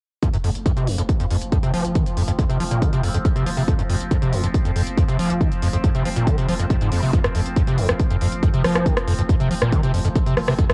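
Dry and tape-hazed, this home cassette recording captures a brief cut of driving, dark peak-time techno at 139 BPM in straight 4/4, built on an F5 chord. An up-front, heavy electronic kick and a techno kit of smooth hi-hats and rim clicks drive the groove, while a squelchy, gritty, distorted acid bass riff with a resonant filter sweep, chorus, delay and sidechain pumping sits out front. A growling 808-style bass on F1 hums in the background, and from 1.0 seconds an overtone-sweeping drone with a slow attack, long release and built-in reverb pumps beneath it all.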